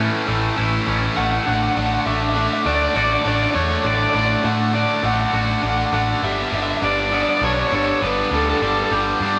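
In a straight 4/4 feel, this short post-rock passage feels hopeful and euphoric, opening on an A chord, moving to D over A, and settling on Gadd9 near 6.2 seconds. Two tight distorted guitars drive the riff, one bright and up front, the other adding a second distorted layer alongside it. A round, punchy picked bass sits low and dark. A twangy, scooped clean guitar and a soft, bell-like glockenspiel played with rubber mallets add arpeggios from the background. From 1.2 to 8.9 seconds, a raw, overdriven garage guitar with a lo-fi edge carries the melody. The group sounds like it is playing live in one room, bathed in a large, wet studio reverb.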